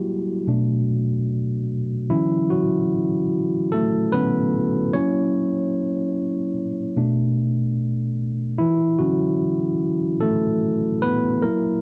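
A lone tine electric piano opens this dreamy, mellow hip hop fragment, cut from a longer piece and carrying the whole 11.8 seconds by itself. The tempo sits at a relaxed 74 BPM in 4/4 with a 60% swing on the sixteenths, and the harmony moves in D major through Bm7, Dmaj7 and F#7 before circling back to Bm7 and Dmaj7. Played through a combo amp and placed up front, the piano sounds clean yet worn and slightly out of tune, ranging from B2 to C#5 and softened by a low-pass filter and cassette tape colour. The recording carries a moderate studio reverb and the character of old tape, with warbly pitch drift and lossy compression artefacts adding a hazy, nostalgic feel.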